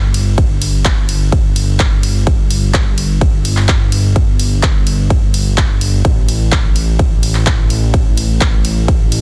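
Festival progressive house at 127 BPM in a straight 4/4, uplifting and triumphant, in a short cut from a longer piece. A fat, nasal analog bass built from detuned sawtooth and square waves sits up front between G1 and A1 with a fast attack, a filter pluck and sidechain pumping, while a punchy, layered electronic kick enters at 0.4 seconds over a big-room dance kit of handclaps, hi-hat and ride cymbal dressed in studio reverb. The sound is dense and heavily limited in a modern master with a digital ambience.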